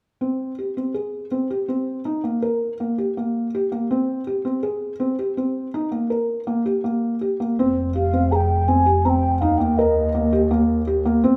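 Contemporary instrumental chamber music in 5/4 at 163 BPM, pensive yet urgent, this excerpt opens with a felt-muted upright piano playing soft, intimate arpeggios with audible action noise, joined at 7.6 s by a dark, veiled bowed double bass with vibrato and at 8.0 s by a hollow, airy wooden flute melody, all three up front in the reverberant space of a recital hall.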